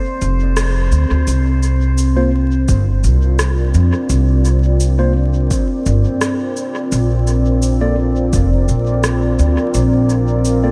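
A woody pizzicato upright bass sits up front in this peaceful, spacious ambient dub, resting on a deep, moody pad of detuned, warbling chords with chorus, while a glassy texture of drifting overtones plays only until 1.3 seconds. Electronic cabasa and rim clicks carry dub echo, a mellow tine electric piano adds clean, echoing stabs in the background from 2.2 seconds, and an overdriven electronic kick drum plays from 2.7 to 8.5 seconds. The dreamy mix is soaked in cathedral reverb with a layer of vinyl crackle.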